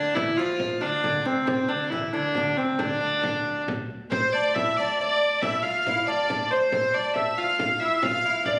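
Mysterious and ancient, this short cut from a longer medieval dance in D minor moves in a straight 6/8 at 92 BPM, with a rich, smooth hurdy-gurdy carrying the melody up front over a delicate, fingerpicked gut-string lute and a soft, hollow stopped-flute organ drone on D2 with a touch of chiff in the background. A small, close and dry frame drum enters at 0.2 seconds, and at 4.1 seconds a very quiet, boxy erhu joins as a second line with vibrato and portamento. The whole sits in a wet recital-hall reverb, heard as if captured on a phone in the room.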